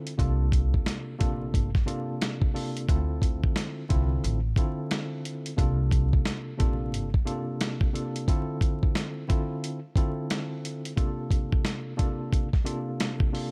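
Dry and close, with a layer of vinyl crackle, this gritty, reflective boom-bap hip-hop excerpt moves at 89 BPM in 4/4 with a 62% swing on the 16th notes. A worn, slightly out-of-tune tine electric piano starts the piece, lightly overdriven and filtered as if heard through built-in speakers, and carries the accompaniment throughout. It alternates between C13sus4 and Dm9. A dusty, sampler-style soul drum kit sits up front, compressed and gritty, with a thumpy kick, a medium-tuned snare and hi-hat. A woody, growly pizzicato upright bass with steel strings holds the low end from 0.2 seconds until it drops out at 7.2 seconds, leaving the keys and drums to finish the passage.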